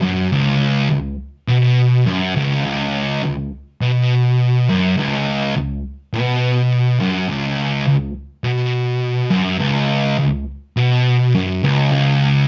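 Metal at 103 BPM in a straight 4/4, this short cut from a longer piece carries a sludgy, heavy mood. A thick fuzz guitar plays alone from 0.0 to 12.5 seconds, picked in a low register between C#2 and B2. Its distorted, double-tracked tone sits up front, thick and saturated with fuzz. A moderate studio reverb gives the sound a sense of a band playing live together in one room. The music shifts to a new section at 2.6 seconds and holds that ground through to the end.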